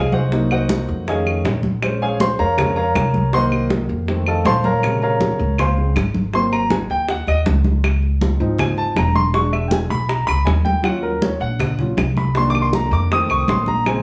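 An up-front grand piano takes a warm solo throughout this driving, fiery Afro-Cuban jazz excerpt in Bb minor at 160 BPM, moving through chords such as Cm7b5, F7alt, Bbm9, Dbmaj7 and E9 over a thumpy, woody pizzicato upright bass. Bright, thin-skinned congas in a live room enter at 0.1 seconds, tight, high-tuned bongos played with soft hands join at 0.3 seconds, and claves sit in the background, with the recording heard from further back in the room through a wet studio reverb.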